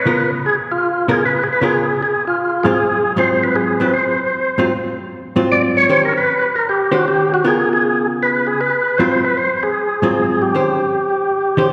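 Bluesy and swinging, this short jazz excerpt moves at a brisk pace with a lilting swung feel. A percussive tonewheel organ carries the melody up front, its full, clean tone marked by second harmonic percussion and key click and turning through a slow rotary speaker. Beside it, a hollow-body jazz guitar plays accompaniment from 0.1 seconds, its picked electric sound dark and compressed, spanning a broad range from low to high. The harmony circles through sixth chords on Db, Ab and Eb, cycling twice across the passage. A wet concert-hall reverb with a long tail surrounds both instruments, giving the close, forward playing a spacious setting.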